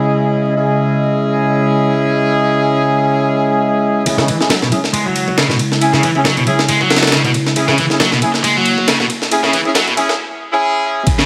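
A warbling, detuned tape-like pad holds C# minor chords with chorus and sidechain pumping, joined from the start by smooth-topped horn stabs with light vibrato and tape echo, in this gritty, swaggering breakbeat cut at 137 BPM in C# dorian with a swung 16th feel. At 4.1 seconds a compressed, pitched-up sampler drum kit with a thumpy kick, high-tuned snare and ride cymbal arrives, followed at once by a bright, high-gain distorted guitar riff. Filter sweeps on the pad, horns and guitar carry a build-up until a break at 10.2 seconds, all set in a lush hall reverb under a layer of vinyl crackle.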